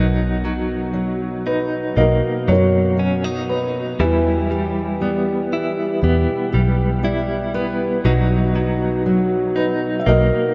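A fingerpicked steel-string acoustic guitar with a dark, up-front tone opens this tender, nostalgic folk-pop ballad. It is joined from the start by a clean, compressed electric guitar, recorded direct, spinning arpeggios through a tremolo effect, and by a round, punchy, foam-muted electric bass with a vintage, amped character. At 1.5 seconds a felt-muted upright piano enters with the melody, its soft, mellow, intimate sound thickened by heavy felt. The harmony moves slowly from Bmaj7 to Em and back to Bmaj7, giving the passage a gentle, reflective sway in a straight 4/4 feel. A huge ambient reverb places the music in a vast, echoing space, and the recording is cut from a longer piece.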